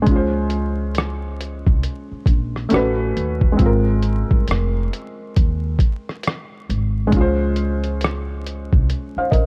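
Lo-fi hip hop at a slow 68 BPM with a swung 16th-note feel, this cosy, mellow excerpt from a longer piece sits in a dark production with vinyl crackle and little reverb. A felt-muted upright piano with a soft, intimate, short-sustained tone and cassette tape colouring plays chords moving from Dbmaj7 through A69 and Ab69 back to Dbmaj7, over a woody, pizzicato upright bass, both placed up front from the start. Entering at 0.1 seconds, a muffled, pitched-down sampler-style kit carries a thumpy kick, hi-hat and rim click with vintage 12-bit grit, sitting slightly louder than the other parts.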